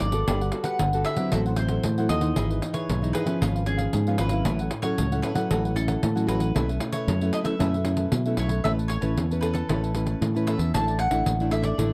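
A bright, punchy fingered electric bass sits up front in this playful, festive samba and choro excerpt, its direct electric tone carrying the low end in a straight 4/4 feel. Above it, a mandolin carries the melody with a round, picked sound from its doubled strings. A fingerpicked nylon-string guitar adds classical-toned accompaniment, and a crisp cavaquinho joins at 0.3 s. A jingly pandeiro played with hard hands sounds as if in a small room. The harmony moves through colourful extended chords such as Gmaj9, Emaj7/G# and B9sus4 before settling into a new section at 8.6 s on Aadd9 and Dsus2/A. The close, dry 1970s-style studio sound carries only light reverb, and the fragment is cut from a longer piece.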